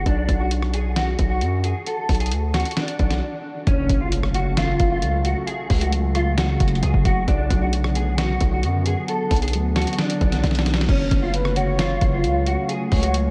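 A punchy, heavy 808-style bass with a fast, decaying attack drives this eerie, menacing half-time trap excerpt at 133 BPM in F# harmonic minor, with a dark, clean electric guitar melody through chorus and analog delay and a muffled, pitched-down sampler drum kit with a thumpy kick sitting up front, a very quiet electronic impact at 3.8 seconds, a glassy, warbling vintage FM pad entering in the background at 4.2 seconds, and a breathy, flute-like synth lead with vibrato joining at 11.3 seconds, all inside a dreamy mix soaked in cathedral reverb.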